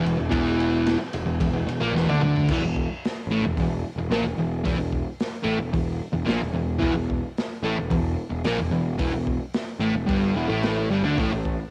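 Gritty and menacing, this garage rock excerpt pairs a double-tracked fuzz guitar riff and a growly, overdriven picked bass, both up front, with a crunchy breakbeat drum kit whose dark cymbals and rolled-off top sit in a small room, a drum fill at 1.9 seconds ushering in a longer stretch over E minor, all captured on a home cassette recording.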